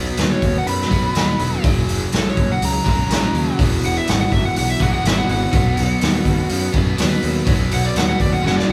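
Driving and raunchy, this blues rock and southern rock excerpt moves at 124 BPM in a straight 4/4 in B major, cut from a longer piece and played by a band live in one room with a moderate large studio reverb. An overdriven slide guitar carries the melody as a solo from 0.2 seconds, its fingered slide lines sitting high and sounding warm. Beneath it, a bright, double-tracked overdriven electric guitar picks a low riff, while a fuzz picked electric bass adds a growly, overdriven bottom end. The raw garage drum kit sits up front with a boomy kick, a medium-tuned snare and hi-hat, its sound gritty and saturated with a rolled-off top, and it plays a fill at 8.4 seconds. Very quietly in the background, an overdriven tonewheel organ holds thick sustained chords through a slow rotary speaker with chorus vibrato as the harmony moves through B7, F#7 and E7 before returning to B7.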